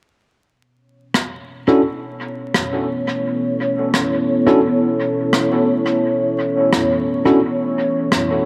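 Ambient dub at 86 BPM in a straight 4/4, this deep, hazy excerpt from a longer piece rests on a single B9sus4 chord, tuned to A4 = 441 Hz. An acoustic rim click with an airy, polished edge enters at 1.1 seconds, a clean tine electric piano plays low-pass filtered stabs from 1.7 seconds, and both trail dub echo, while a dark, detuned sawtooth pad with a sub octave, chorus and slow attack holds moody sustained chords from 2.2 seconds. Moderate spring reverb, an echo-heavy mix and a layer of vinyl crackle wrap the sound in a dusty haze.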